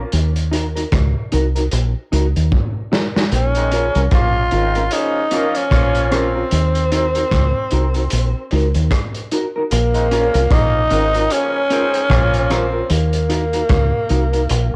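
Roots reggae at 75 BPM with a serious, meditative mood, this clip from a longer piece rides a deep, round fingered electric bass and a crunchy, saturated breakbeat kit under a mellow electric guitar with analog chorus, cassette tape and dub echo, while a raspy, growling tenor saxophone enters at 3.3 seconds after a drum fill and is joined by a warm, octave-doubled horn section with light vibrato and dub echo, all moving between Ebm and Bbm in a cassette-recorded home room.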